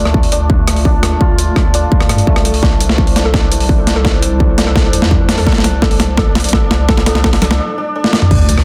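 A shimmering, hammered santur plays ringing arpeggios, softened by a low-pass filter and tape echo, while a filter sweep runs across it through this heavy, dark half-time drum and bass build-up. A distorted electronic kick and a gritty, overdriven sampler-style kit with a high-tuned snare, hi-hat, rim clicks, toms and crash sit up front, pitched down and re-recorded in a large room, with a drum fill beginning at 2.6 seconds. A deep, wobbling bass with chorus anchors the low end, and a moody analog pad with lush chorus and sidechain pumping holds sustained chords in the background as the harmony moves from D minor to C. At 3.3 seconds a hollow, bouncy square pluck adds a melody on a single pitch, treated with chorus and tape echo. The section closes with an electronic impact at 8.3 seconds, all within light digital ambience and a dense, heavily limited modern master.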